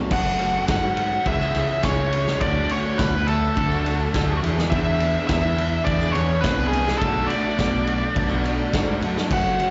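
Indie rock at 104 BPM, restless and bittersweet, cut from a longer piece and heard as a live gig through the venue's PA in a recital hall, where a nasal, wah-parked lead guitar sings the melody up front over a growling overdriven bass, a loose indie drum kit with dark cymbals and a punchy kick, a lo-fi guitar through a small old amp with slapback echo, a very quiet bright overdriven guitar riff, a barky tine electric piano second line, soft sawtooth string-machine cellos holding chords, and a jingly tambourine joining at 0.4 seconds, all moving through F#m, C#m, D, E7 and Bm7.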